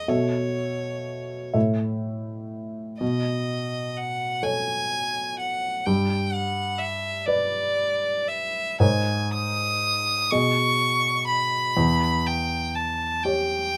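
Pastoral and luminous, this short passage cut from a longer impressionist classical duo drifts in a rubato 6/8 at about 41 BPM, with a clear, smooth bowed violin singing the melody with even vibrato up front over an intimate baby grand piano whose short sustain and audible action noise give the accompaniment a close, natural feel, all in light reverb as the harmony glides from B11 through G and G#sus24 to a closing Em6.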